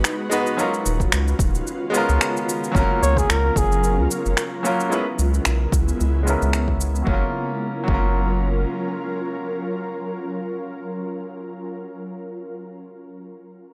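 A round, deep analog bass sits up front in this relaxed sunset chillout excerpt, joined by a bright grand piano with tape echo, an ethereal, detuned pad with ensemble chorus, and overdriven electronic finger snaps, shaker and a punchy kick that enters at 1.0 seconds and drops out briefly before 2.7 seconds. A jazz-style flugelhorn with light vibrato offers a short solo phrase from 3.0 to 4.1 seconds while a filter sweep runs over the piano, all set in a dry, gritty recording with light digital ambience over a gently swung groove.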